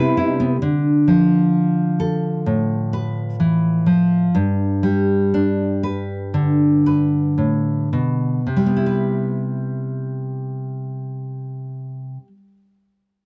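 A slow, straight 4/4 pulse of 54-65 BPM that eases back between 0.6 and 8.5 seconds carries this heartfelt, nostalgic acoustic folk-pop ballad in C major, cut from a longer piece, where an up-front, full-bodied, fingerpicked nylon-string guitar plays until 12.6 seconds over Cmaj7, Dm and G, while a mellow French horn with vibrato and a dark, reedy, bowed cello in the background sound only in the opening 0.6 seconds, all captured in a dry, close 1970s-style studio with light reverb.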